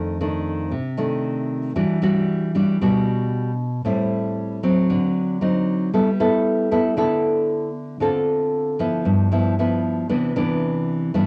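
A home recording on cassette, this short cut from a longer piece carries light reverb and the ambience of a small room. It is a sunny, romantic bossa nova in G major, moving at 115 BPM in a straight 4/4. A solo nylon-string guitar, acoustic and classical in character, sits up front with a warm, fingerpicked tone and a cassette-tape colour, ranging from F2 to A4. The harmony moves through rich extended chords, from F6 and Em9 to Am7, D7b9 and a settling G69, then Dm7 and G6. At 10.1 seconds the music turns to a new section on Cmaj9, and the guitar plays on until 11.3 seconds.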